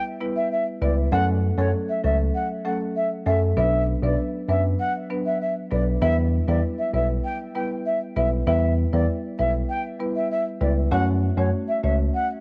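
Dancehall in E dorian at 98 BPM, tough and bouncy, this short clip from a longer piece sets a mellow, airy jazz flute with vibrato and tape echo over a woody marimba accompaniment and a bright, bell-like electric piano carrying the bass, moving through Em, F#m and Bm in a small room with the character of a home cassette recording.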